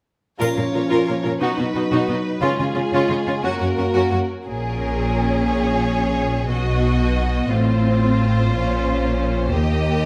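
Lush, vibrato-rich violins carry the melody over a clear, intense second violin line, smooth violas and clear cellos in this swashbuckling, determined cinematic adventure cue in Bb minor at 118 BPM in a straight 12/8, as mellow French horns hold chords until 4.2 s, a faint triangle sounds briefly at the start, and full, up-front double basses join at 4.5 s as a build-up runs through the rest of the excerpt, all set in a moderate scoring-stage reverb.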